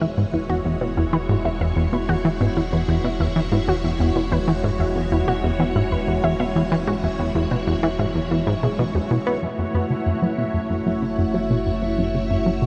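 A punchy, funky plucky analog bass riff with analog delay and a filter sweep leads this cosmic, expansive excerpt of ambient, sequencer-driven space music at 94 BPM in E major, moving from E69 to F#m7 over lush, vintage string-machine chords with ensemble chorus, bright detuned unison-pluck arpeggios with delay in the background, and a deep, round analog bass, while a mellow, pulsing gated texture with chorus enters at 9.7 s, all set in a huge, dark reverb.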